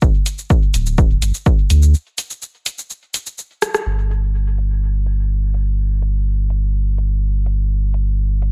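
Meditative and hazy, this dry dub techno excerpt at 125 BPM rests on a round, sine-like sub bass pumping under sidechain from D1 to D2, while a punchy, tape-warm electronic kick drops out at 1.6 s and an up-front analog drum machine keeps low-pass-filtered hi-hat, rim click and shaker ticking through a break that ends at 3.9 s after a drum fill at 3.6 s.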